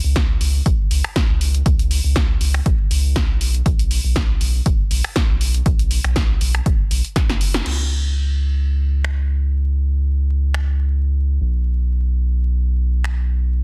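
The sound is dense and tightly limited, dry in the room and dusted with vinyl crackle, giving this short deep house cut a smooth, moody cast at 120 BPM with a gentle swing on the sixteenths. A round analog bass carries the low end from the very start, deep and dark with a nasal, sine-like core, a fast attack and sustained notes between F#1 and C#2, sitting up front and pumping against the sidechain. An electronic kick drum with a punchy, tape-warm thump enters at 0.2 seconds alongside a punchy analog drum machine that supplies hi-hat, snare, finger snaps and crash cymbal at a lower level. Around 7.2 seconds a drum fill begins, and the kick drops away at 7.3 seconds, just before a band accent at 7.5; the second section then continues with bass and drum machine. The drum machine stops at 13.1 seconds, leaving the bass to carry the final moment before the cut ends.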